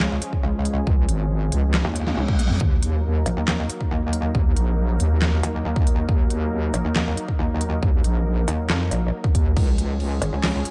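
A metallic, distorted FM wobble bass snarls through this heavy, aggressive half-time dubstep excerpt, joined from 0.9 seconds by a saturated square-wave wobble bass, while a punchy electronic kick, a deep snare with crisp hats and handclaps, a drum fill and a brief reverse cymbal around 2.0 seconds, and a lush, detuned supersaw pad with sidechain pumping fill out a dark, warm mix that moves from Db to Eb minor.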